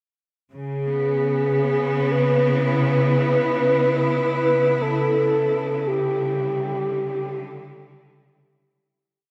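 A rich, intense cello section sits up front, bowing slowly shifting chords with vibrato and a smooth top from 0.6 s to 9.1 s, moving from C#m7 to Em7/C# at 4.8 s. Above it, a mellow, horn-like synth lead with a round sawtooth tone and soft attack traces a free, sustained melody in a narrow range, its sound thickened by chorus, vibrato and delay. This short, complete piece is dark ambient drone at 56 BPM in 4/4, set in C# locrian with tuning at A4 = 439 Hz, and its mood is unsettling and dark. A cathedral reverb with a 5.7-second decay bathes the music in a vast, wet space. The whole piece forms a single section that fades out from 4.8 s to its close at 9.1 s.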